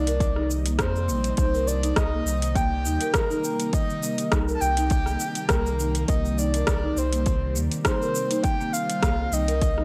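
This dry, gritty hardware recording has a close, unvarnished sound, cut from a longer piece of organic downtempo in C minor at 102 BPM, with a gentle 55% swing on the 16ths. The mood is mystical and warm, resting on a single Cm7 chord. A breathy, flute-like synth lead carries the melody up front, its soft tone touched with subtle chorus, vibrato and analog delay. Beneath it, a marimba played with soft mallets spins woody, mellow arpeggios through its own analog delay, while an ethereal pad hangs in the background with ensemble chorus, built-in reverb, phaser and sidechain pumping. A round, dark analog bass with a filter sweep is likewise shaped by sidechain pumping. The deep house kit of metallic hi-hats, rim click and shaker enters at 0.1 seconds, and an overdriven, deep electronic kick follows at 0.2 seconds, both gaining grit from their overdrive.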